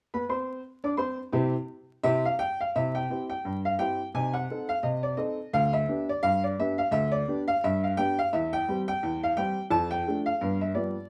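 A moderate club reverb and a layer of vinyl crackle surround this short ragtime piano recording, cut from a longer piece. A single upright piano plays alone from 0.1 seconds to the end at 11.1 seconds, its woody, boxy tone sitting up front and spanning D2 to D6. The mood is cheerful and jaunty, with a light swing on the sixteenth notes in 2/4 time. A brief opening passage gives way at 2.7 seconds to a second passage. The harmony moves from C through Cdim7, G/D, C/E and Dm/F before landing on G7.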